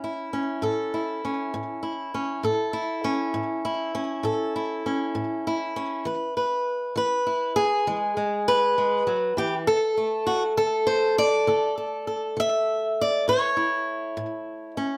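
A boxy, up-front fingerpicked acoustic guitar in a swing style carries this soulful, swaggering country blues on its own, its tone touched by a slapback echo and reaching from low A2 to F#5. Set in A major at a relaxed 66 BPM in 12/8, the brief 15-second excerpt moves from A to E at 6.1 seconds, then to D5 and back home to A. Close, detailed microphones and a light reverb keep the sound intimate and present.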